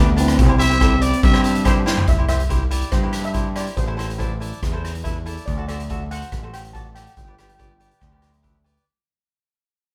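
Recorded as a band playing live in one room with moderate studio ambience, this sunny calypso fragment in C major moves at 141 BPM in a straight 4/4. A mellow, shimmering steel pan carries the melody over crisp, picked cavaquinho, an overdriven, growling fingered electric bass and an up-front street-band drum kit with a boomy kick, while a raspy trumpet adds a brief second line from 0.6 to 2.1 seconds. A drum fill at 1.9 seconds leads into a carefree stretch over C, Am, D7 and G that fades out to the end.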